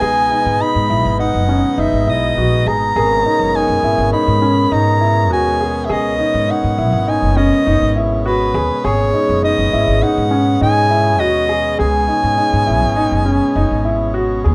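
A soprano saxophone carries the melody up front in this pensive, restless piece of contemporary chamber music, its close-miked, classical-style tone shaded with vibrato. The music moves at 102 BPM in an uneven 5/4 meter with a straight feel, resting on a G# minor chord throughout. Beneath it, a concert grand piano plays arpeggios with a deep bass, while a pizzicato upright bass with steel strings sits up front, woody and acoustic. A vibraphone played with soft mallets, motor off, adds a mellow, ringing second line from the background, and a hand-pumped harmonium holds sustained chords with a reedy, nasal, breathing quality. Moderate studio ambience and a dark, warm production frame this short cut from a longer work, with the saxophone falling away at 14.1 seconds.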